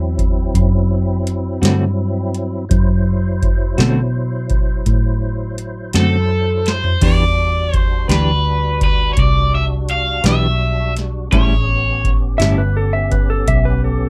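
Laid-back and soulful, this slow 12/8 blues excerpt in D mixolydian at 56 BPM moves from D7 to Em7 to A7 over a fat tonewheel organ holding sustained chords through a slow rotary speaker with key click, a round, foam-muted fingered bass, a booming analog drum machine with deep kick, crisp snare and metallic hats, and a twangy clean guitar with tremolo, while a bright, overdriven garage guitar takes the melody up front with slapback echo from 6.0 seconds and a dark, compressed lap steel slides in with volume swells at 12.4 seconds, in a lightly reverberant room.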